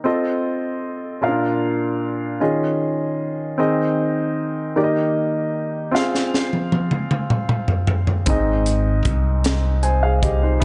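A woody upright piano opens this slow gospel fragment alone, its long, natural sustain carrying a soulful yet jubilant accompaniment in a straight 6/8 over chords moving from F7 and Bb through Eb9sus4 to Fm. At 6.0 seconds a crisp fusion drum kit arrives with a fill across the hi-hat, kick, snare and toms that runs until 8.3 seconds. The kit sounds gritty and saturated, with a punchy kick, a high-tuned snare and a pumping small-room character. At 8.3 seconds, as the harmony lands on Ab, a bright, growly fingered electric bass joins low and direct, with all three parts sitting up front. Light reverb and a small-room ambience frame a dark, warm production that feels cut from a longer piece.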